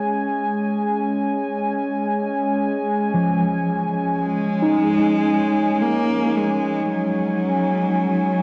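Ambient music in a slow three-beat metre, luminous and peaceful, cut from a longer piece and captured as a lo-fi home recording on cassette inside a lush hall reverb. From the outset a warbly, detuned pad sits up front holding sustained chords over a rootless F#sus2, its slow attack and long release softened by chorus and shimmer reverb for a nostalgic glow. Behind it a glassy, ethereal glass harmonica adds a pure, beating texture through shimmer reverb, fading out across the whole passage. At 3.1 seconds a mellow tine electric piano enters with clean arpeggios colored by tape echo, heard as if through built-in speakers. At 4.2 seconds a single bowed cello steps forward with an expressive melody, its nasal, boxy tone marked by vibrato, portamento and a soft attack.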